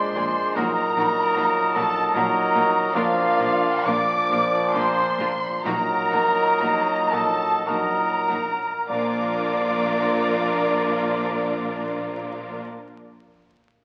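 Opening at once in Bb major, this tender, lyrical fragment of a slow romantic orchestral movement in 3/4 sways with rubato between 46 and 76 BPM and slows from 1.8 to 8.9 seconds, as a lush violin section with soft-attack vibrato carries the melody over a second line shared by a pure, hollow flute, an oboe in the background and a richer second violin section gliding with portamento, while a distant bassoon and a smooth viola section fill in the accompaniment, a vintage-toned horn section and a tight trombone section hold sustained chords, a mellow trumpet adds stabs, a bright, ringing harp plays very quiet arpeggios, and the cello section, a quiet tuba and a woody double bass section anchor the bass, heard through a wet scoring-stage reverb and the crackle of a very old 78 rpm record.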